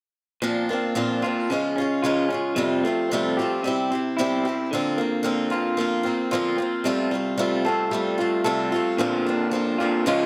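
Hopeful and jangly, this short rock excerpt moves at a steady, straight 4/4 pulse. A bright, boxy acoustic guitar, picked in a swing style, carries the accompaniment up front. Beside it, an electric guitar through a small old amp plays a picked riff with a warm, slightly broken-up, lo-fi character, also sitting up front. Both guitars run together from 0.4 to 10.3 seconds over a wet studio reverb, with chords moving through Bbadd9, Db, Fadd9 and C. At 9.0 seconds the music turns to a new section, returning to Bbadd9 before the cut.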